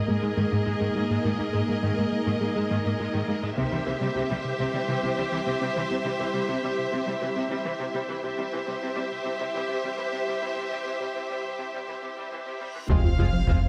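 Set on a moderately reverberant scoring stage, this tense, relentless hybrid orchestral and electronic film cue at 103 BPM builds under a filter sweep. Lush bowed violins, smooth violas and focused cellos hold a second line, accompaniment and bass over an ethereal, tremolo-shimmering pad, a very quiet detuned sawtooth arpeggio and a round, nasal analog bass riff, moving from Absus2 to C at 3.6 seconds, where close, dry taiko drums first strike in the background. A huge, dark reverse cymbal and sub drop lead into an impact on F minor at 12.9 seconds, where a high violin note, brief mellow French horn and trombone chords, woody double basses and a thick, saturated sub bass all land together.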